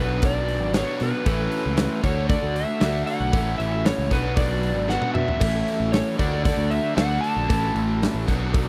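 A dark, overdriven slide guitar sings the melody from the first beat over a bright, double-tracked electric guitar riff, a growling fingered bass with overdrive and a lush, warbling string machine pad held very quietly underneath, with a big acoustic rock kit and a faint metallic cowbell joining at 0.2 seconds. This sunny, driving classic rock excerpt in A major moves at 116 BPM in a straight 4/4, cycling through Bm, A6 and D, with a drum fill at 4.9 seconds. The punchy kick and bright cymbals sit up front in a dry, close 1970s-style studio sound, and the passage is cut from a longer piece.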